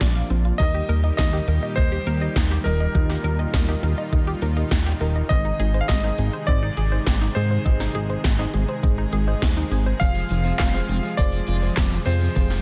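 A dense, heavily limited modern mix in digital ambience carries this nostalgic, dreamy synthwave excerpt in Eb major at 102 BPM. A bright, cutting electric grand piano sings the melody through tape echo over the smooth, full-bodied sustained chords of a detuned supersaw with sidechain pumping. Round analog pluck arpeggios with chorus run until 9.9 seconds, and lush FM electric piano stabs layered with a soft pad sit in the background. A glossy, up-front chorused synth bass and a thumpy electronic kick ground the groove alongside 80s pad drums with a gated snare, handclaps, metallic hi-hats and crash cymbal. An overdriven semi-hollow guitar riff enters at 10.0 seconds as the chords move from Bbadd9 through Eb and Ab to Fm.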